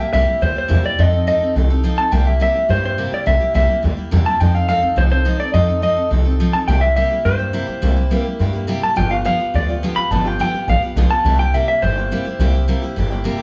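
Retro and rowdy, this short rockabilly excerpt, cut from a longer piece, barrels along in a straight 4/4 feel with the sound of a band playing live together in one room. An electric guitar through a small old amp carries the melody, its tone slightly broken-up, lo-fi and compressed, sitting up front in the mix. Beneath it, a picked steel-string acoustic guitar fills in the accompaniment with a bright, full-bodied dreadnought ring. A pizzicato upright bass on gut strings anchors the low end, woody and thumpy, placed close and prominent. The harmony moves through dominant seventh chords, C7, F7 and G7, and a moderate large studio reverb gives the whole room a lively sense of space.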